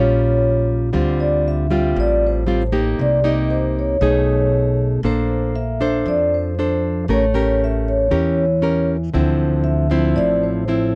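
A fingerpicked nylon-string guitar sits up front with a warm, classical tone and an audible finger squeak, while a mellow, ringing vibraphone played with soft mallets carries the melody over a woody pizzicato upright bass, giving this relaxed, sophisticated bossa nova excerpt a dry, close 1970s studio feel with light reverb as the chords move from Eb9 through Dm11 and A7b9 to Dm9.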